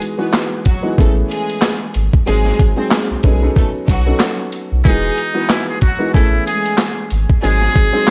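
A gritty, thumpy sampler-style drum kit with a high-tuned snare, hi-hat and handclaps drives this confident, nostalgic boom-bap hip-hop cut at 93 BPM in E major, joined by a dark, woody upright piano, bright bowed string stabs with tape echo, barely audible finger snaps, a deep, round dub sub bass from 1.0 s, and a buzzy muted trumpet with light vibrato arriving at 4.9 s, set in a dry recording laced with vinyl crackle.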